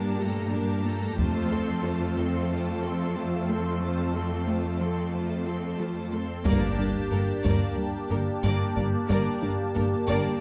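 A dark, warm production set on a scoring stage with moderate reverb opens this tense, relentless cut from a longer hybrid orchestral and electronic film score, moving at 91 BPM in a straight 4/4 in G minor. From the start, a close, focused cello section carries the bass up front while a swirling, bright analog pad, treated with phaser and chorus, holds sustained chords. A clear violin section plays a second line and an intense viola section sits in the background with accompaniment. A very quiet, crystalline wavetable pluck runs arpeggios throughout, and a compressed, saturated taiko ensemble first strikes at 1.2 s as the harmony moves from Gmadd9 to F. At 6.5 s the music returns to Gmadd9 with a band accent and a huge impact, and the texture thickens: a distant, lush violin section, entering just before at 6.4 s, takes the melody, a mellow French horn section adds sustained chords, and a rubbery, hollow square bass riff joins an expressive double bass section beneath the returning taiko.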